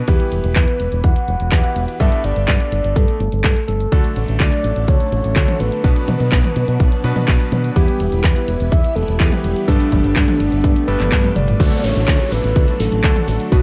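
Bright, clangy electric grand piano stabs open this danceable, romantic italo disco excerpt, joined at once by a round, sub-octave synth lead melody with chorus, vibrato and tape echo, an envelope-filtered fingered electric bass, a punchy, up-front electronic kick and a tape-warm house kit of cabasa, crash, handclaps, hi-hat and toms, while a swirling, phased string machine adds soft sustained chords in the background from 3.9 seconds, and after a drum fill a background electronic downlifter sweeps in at 11.6 seconds over a dark production with light digital ambience and vinyl crackle.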